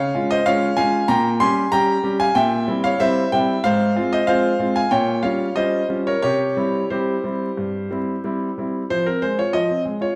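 The rhythm moves in four with uneven beats and a supple rubato, the pulse pulled and released in the manner of a classical-period sonatina, and the mood is elegant yet restless. A concert grand piano plays alone throughout, ranging from G2 to C6 and sitting up front, its clear tone grounded by a deep bass and a long sustain. The harmony passes through shadowed chords such as Gdim/Bb, C7/Bb and Gm7b5/Bb before landing on C at 6.2 seconds, and a new section begins at 8.9 seconds on Fm. A wet recital hall reverb surrounds the instrument, and a vinyl crackle lends the sound an aged patina. This brief passage is cut from a longer piece, ending at 10.2 seconds just after the new section opens.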